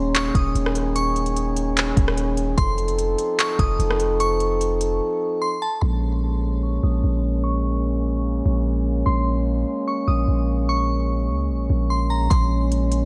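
A half-time 4/4 pulse at 148 BPM from a soft, tape-warm R&B drum kit of kick, smooth hi-hats, handclaps and rim clicks drives this melancholic, ethereal cloud-rap fragment in Bb minor, dropping out at 4.9 seconds through a break and a filter sweep before returning at 12.3 seconds, while a deep, sine-like 808 bass holds long decaying notes, a mellow brass ensemble sustains pumping, low-passed chords, and a crystalline FM synth bell with chorus and delay traces a high melody over Eb7sus4, F7 and Bbm9 in light digital reverb.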